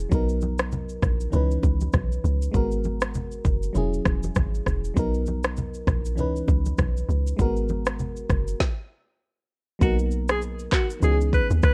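Afrobeats with a sunny, romantic glow and a swung 16th-note lilt, built on a round, up-front log drum bass, a gritty deep house kit with a woody snare, a warbling vintage FM electric piano on mellow extended chords, and low-tuned congas in the background, all dry and dark, with a stop at 8.6 seconds clearing the way for a breathy alto saxophone to enter at 9.8 seconds with a smooth, lightly vibrato pop line.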